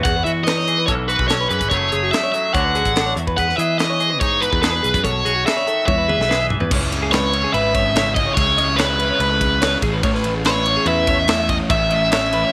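Light reverb and studio ambience frame this bright, wistful stretch of math rock and midwest emo, moving at 144 BPM in a straight 4/4 through chords like Emaj9, B9sus4 and F#m9. Up front, a warm overdriven electric guitar with slapback echo carries the melody over compressed twelve-string arpeggios, a clean twangy electric guitar, a growly picked bass, and a polished, airy fusion drum kit with a high-tuned snare and punchy kick. After a drum fill, a dark, double-tracked overdriven semi-hollow guitar enters with a riff at 6.7 seconds over C#m7, and the twangy guitar stops at 8.4 seconds.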